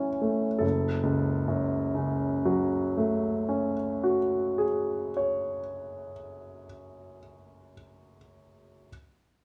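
In a freely rubato 4/4, this wistful, hazy classical fragment, cut from a longer piece, features only an intimate, up-front grand piano with audible action noise playing accompaniment from 0.0 to 8.9 seconds, shifting from F#m7 to F#madd9 across a broad low-to-middle range within a moderate stone room reverb.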